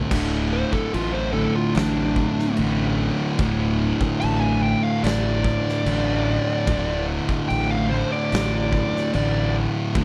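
Two thick, dark fuzz guitars open this ominous, hypnotic stoner and doom metal excerpt at 0.0 s, one up front and one further back, riffing on a D5 chord at a slow 73 BPM in 4/4 over a growly overdriven fingered bass and an oversized low-tuned drum kit with a boomy kick, dark cymbals and a pumping, saturated big-room sound sitting in the background, while from 0.5 s a distorted fuzz lead guitar with slapback echo solos high above, all bathed in studio reverb.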